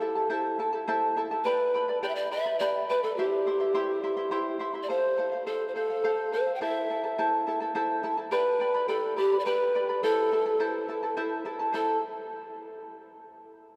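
A long cathedral reverb surrounds this melancholic, wistful Andean folk excerpt, recorded in a church or concert hall, where each note hangs in the air for seconds. The pan flute carries the melody up front, its woody, airy tone softened by rolled-off highs, with a crisp, chiffy attack, vibrato and a slightly unsteady, human quality. Beside it, the acoustic charango provides a fingerpicked accompaniment on its double strings, some doubled at the octave, giving a shimmering sparkle. Both instruments play from the start until 12.0 s, moving in an unhurried, straight 6/8 through a wistful progression of Am, G, C and F before returning to Am. At 11.7 s, a new section begins as this fragment of a longer piece draws to its close.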